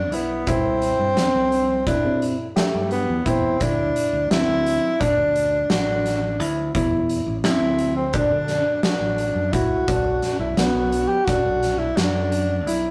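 A bright, intricate progressive instrumental in an uneven 9/8 meter, cut from a longer piece, where a breathy tenor saxophone with light vibrato carries the melody up front over warm, polished grand piano arpeggios. Underneath, a growly, direct fingered electric bass and an oversized low-tuned acoustic drum kit, gritty and saturated, with a fat snare, boomy kick and hi-hat, drive the band, while the chords move from C to Dsus2 at 3.6 seconds and to Bm at 9.9 seconds. The rough rehearsal-room recording sits in a moderate stone room reverb, with the drums pumping and big in the space.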